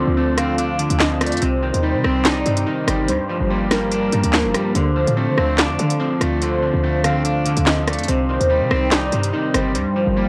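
A half-time drill groove at the heart of this cold, ominous hip hop piece comes from an up-front electronic kit of sharp snare, crisp hi-hats, rim clicks and handclaps coated in vintage 12-bit sampler grit, entering at 0.4 seconds above a punchy, tight 808-style bass that decays quickly. A bright, twangy electric guitar at the edge of break-up plays picked accompaniment up front, while glassy digital keys spin chorused, delayed arpeggios and a velvety, detuned synth lead carries a smooth second line with vibrato. Behind them a warbling, nostalgic tape-like pad holds mellow sustained chords through phaser and its own reverb, giving the dark, lightly reverberant mix a lo-fi haze over the cycling Dm7, Cm and Gm7 changes.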